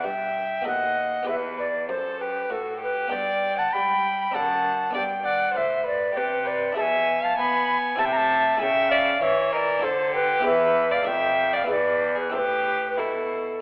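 A straight 3/4 pulse at 98 BPM drives this solemn, flowing excerpt of a baroque-style classical sonata movement with continuo, where an airy, chiffy tenor recorder with vibrato carries the melody up front beside a close, gut-string violin on the second line, over a rich, reedy period-style cello bass and a muted, lute-like buff-stop harpsichord in the background, turning to A minor from 6.8 s, heard through a wet recital hall reverb and a telephone sound.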